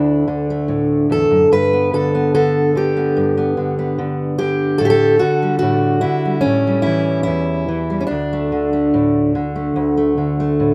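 A moderate studio reverb gives this short folk passage an auditorium-like air around a single fingerpicked steel-string acoustic guitar, which sits up front with a warm tone and audible finger squeaks. Played solo in D major at about 73 BPM in a loose, rubato 4/4, the guitar moves through Dadd9, Gadd9, A7sus4 and A7 before settling on D5, spanning D2 to B4. The mood is gentle and hopeful, and the 10.7-second fragment is cut from a longer piece.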